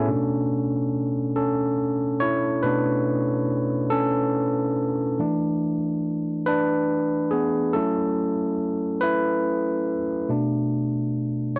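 A lone overdriven tine electric piano opens this late-night R&B excerpt, its barky tone pushed through a combo amp and sitting up front in a dry, close 1970s-style studio sound with a touch of light reverb. The piece moves in a slow 6/8 at 47 BPM counted in dotted quarters, with a straight feel and tuning set to A4 = 444 Hz. Playing solo from 0.1 to 11.6 seconds across a range from B2 to C#5, the piano carries a gritty, yearning character throughout. The harmony starts on Bm9, shifts to E7sus4 at 5.2 seconds, moves through F#m7, and settles on Bm7 near the end. The result is a brief, intimate passage lifted from a longer piece, full of after-hours longing.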